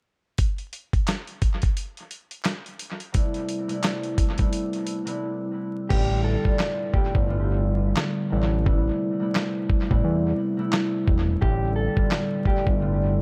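A swung 87 BPM boom-bap beat in A minor, driven by a gritty, compressed sampler-style drum kit with a thumpy kick, snare, handclaps, hi-hat and crash, sets a tough, reflective hip-hop mood, joined at 3.1 seconds by a ringing, fingerpicked concert harp colored by cassette tape and analog delay, before the drums briefly drop out at 5.2 seconds and return at 5.9 seconds, minus the hi-hats, alongside a fat, saturated, detuned analog bass and short phrases from a dark, clean electric guitar, the whole mix echo-heavy with vinyl crackle and light reverb.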